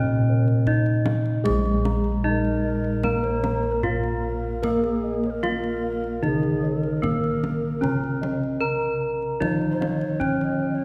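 Javanese gamelan in Bb slendro at 75 BPM in a straight 4/4, serene and ceremonial, cut from a longer piece. A bronze metallophone struck with a horn mallet carries the melody up front with a ringing, boxy tone, while a second, softer metallophone on padded disc mallets plays the accompaniment, its paired tuning producing shimmering beats. Round bossed gongs anchor the bass with a warm, beating bronze tone, and in the background a second set of bossed gongs and a dark, smooth metallophone with tape echo spin out arpeggios. A deep kendang, struck with hard hands and heard close, enters at 0.5 seconds. A breathy, hollow bansuri joins at 2.3 seconds as a second line, its vibrato and crisp attack floating over the bronze. The ensemble sits back in a concert hall with a long, wet reverb that lets the metal ring on.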